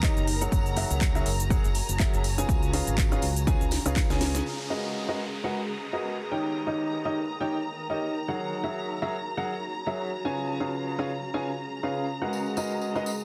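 A clear, worn baby grand piano sits up front with a delayed, sidechain-pumped riff, leading this soulful, bittersweet piano house piece at 122 BPM in G# minor, with a light 16th-note swing and chords moving through F#9, C#7, G#m9 and D#7. Lush symphonic strings with vibrato, portamento and vintage 12-bit sampler grit hold sustained chords over a cloudy, detuned granular pad in the background, while a bright fingered electric bass, a punchy electronic kick and a house kit with cracking snare, metallic hats, claps, shaker and crash (the two drum parts overdriven) drive the opening alongside a dry tambourine, closing with a drum fill from 3.7 to 4.5 s. From 4.5 s the bass and drums fall away and an electronic downlifter appears over the piano, strings and pad, with the tambourine returning at 12.3 s, in a dense, heavily limited master with light digital ambience.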